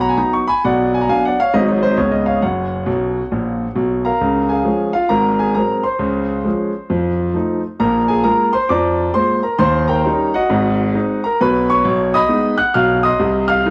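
A home cassette recording with lossy artefacts and a moderate spring reverb frames this exuberant, playful stride piano performance, cut from a longer piece. A concert grand plays alone throughout, placed up front and intimate, with a clear, boxy tone, deep bass, long sustain and audible action noise, colored by the cassette tape. The swung 4/4 feel carries a busy run of dominant seventh chords, and the piano spans a broad range from F#1 up to F#6. A piano fill from 2.9 seconds leads into a new section at 4.2 seconds, where the harmony shifts into a fresh key centre. The playing runs through a chain of seventh chords before closing on a minor chord as the clip ends at 13.7 seconds.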